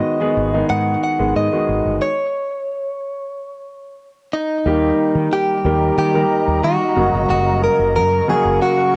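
A bright, clean electric guitar with tape echo carries the melody from the very start of this glossy, romantic pop fragment, over a polished, up-front grand piano with a cassette-tape colour, and a punchy fretless electric bass joins at 0.4 s. A stop falls between 2.0 and 4.7 s, and at 5.5 s an ethereal, slow-attack pad with chorus and a detuned octave-up shimmer enters softly in the background. It all sounds like a home cassette recording made in a small, wet booth.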